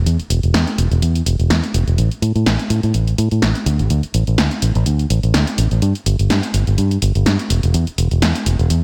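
A dreamy, reverb-soaked mix sets a nostalgic, funky tone for this filtered disco house clip at 125 BPM with a 16th-note swing, where a warm, foam-muted fingered electric bass sits up front under a low-pass filter sweep from 0.0 to 8.8 seconds, joined at 0.1 seconds by a punchy analog drum machine with a punchy snare and hi-hat, all bathed in a lush hall reverb.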